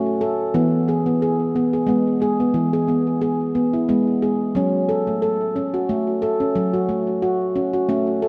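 Gentle and meditative, this short world-music cut at 90 BPM in 3/4 with a light sixteenth-note swing features a solo handpan in F# minor, its ringing nitrided-steel tones and sharp finger strokes placed up front between E3 and A4, moving from F#m to E and back to F#m at 4.5 seconds, all bathed in tape echo and a wet plate reverb for an echo-heavy sound.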